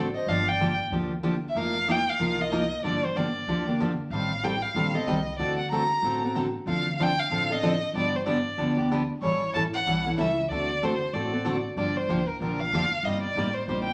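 A wet studio reverb gives this swinging, virtuosic stretch of gypsy-jazz string swing a roomy sheen, cut from a longer piece. A full-bodied picked steel-string acoustic guitar sits up front with the accompaniment over a woody, thumpy pizzicato upright bass, while a bowed violin carries the melody with vibrato, soft attacks and expressive portamento. A dark, distant clarinet adds a brief scooped second line in the background only from 0.2 to 0.8 seconds, and the violin takes a solo from 11.8 seconds.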